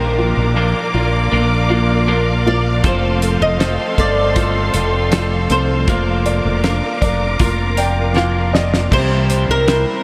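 A fingerpicked flamenco guitar carries the melody from the first moment, its finger squeaks set in analog chorus and a diffuse ambient delay, over a polished grand piano, a compressed, twangy twelve-string electric guitar playing arpeggios, a dark studio string section holding lush bowed chords with expressive vibrato, and a round, punchy fretless bass that sits up front with its own lush chorus. This is a hopeful, heartfelt pop ballad at 79 BPM in a straight 4/4, moving from Bb to F and then Bb/F. A damped 70s drum kit enters at 2.8 seconds, dry and rolled-off, with a fat snare, tight kick and dark cymbals. The piano plays a fill from 7.4 seconds, and the drums add a fill just before the harmony opens onto Cadd9 at 8.9 seconds, where the strings drop out. The whole mix is dreamy and soaked in a huge ambient reverb, and the recording is a short cut from a longer piece.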